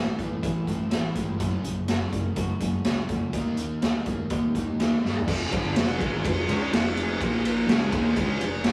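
Quiet-loud alternative rock with a brooding, angsty mood, cut from a longer piece and captured in a rough rehearsal-room recording with stone-room reverb. A clean twelve-string electric guitar plays background arpeggios until 5.3 seconds beneath two very quiet fuzz guitar riffs, one dark and thick. A growly overdriven fingered bass anchors the low end, and a raw garage drum kit, boomy and gritty with a rolled-off top, sits up front from 0.2 seconds with a fill at 5.0 seconds; at 5.3 seconds a bright, double-tracked distorted guitar riff joins in the background alongside faint, shimmering vintage string-machine violins holding sustained chords.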